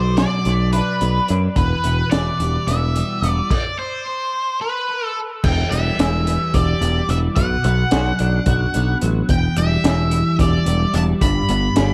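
A 7/8 pulse at 217 BPM in eighths anchors this mysterious, dark psychedelic rock cut in E minor, with a crunchy breakbeat kit entering at 0.2 s, its punchy kick, high-tuned snare and dark cymbals sounding gritty and rolled-off under an analog delay, while a picked electric bass growls up front beneath a bright, twangy twelve-string electric guitar riff, double-tracked and swirling through a rotary speaker. Above them an octave-fuzz lead guitar carries the melody between B4 and B5, its distorted tone shaped by wah and analog delay. The chords move from Bm to Em before a stop from 3.5 to 5.4 s, then the second section cycles Em, Bm and Em, landing on G, all set in an echo-heavy mix with a light small-room reverb.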